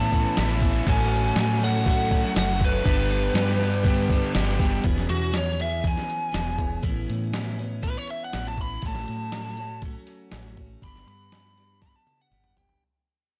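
A blown-out, overdriven recording with little reverb carries this warm, hopeful stretch of folk rock and heartland rock, cut from a longer piece and moving at a straight 120 BPM in 4/4. Up front, a lo-fi, sampler-style kit thumps with a muffled, compressed kick and a medium-tuned snare re-recorded in a large room, alongside a dark, round, foam-muted fingered bass that sits punchy beneath it. A jumbo twelve-string acoustic guitar, picked and octave-doubled, shimmers through the whole passage with audible finger squeak. A double-tracked crunchy electric guitar riff, a very quiet tonewheel organ with key click and slow rotary speaker, and a jingly tambourine in the background fill out the opening until 4.8 seconds. From there a biting, driven lead guitar, carrying the melody from the start, takes a solo as the music fades out, and the drums close with a fill at 11.8 seconds. The chords cycle through Aadd9, F#m/A and G, with an E6 marking the turn into the solo.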